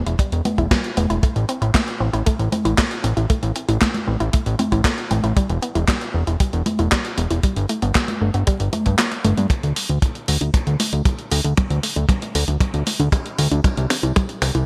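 A fat, saturated analog bass drives this danceable, melodramatic italo disco cut. Alongside it, a lush, detuned unison pluck runs arpeggios through digital delay, and a gated 80s drum machine adds congas, handclaps and toms. A dry, tight kick drops out from 9.0 to 9.5 seconds before a drum fill carries the closing stretch, all in a bright 1980s-style production dusted with vinyl crackle.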